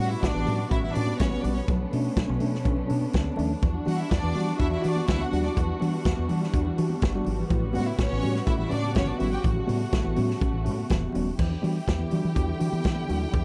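A tight, dark-cymbaled soul drum kit drives this danceable disco excerpt, joined by a round, foam-muted fingered bass, a worn, slightly out-of-tune electric piano with light overdrive, a clear string section carrying a second line over darker, woody sustained string chords, and faint high-tuned congas entering at 0.2 seconds, all moving through lush extended chords in a dry sound.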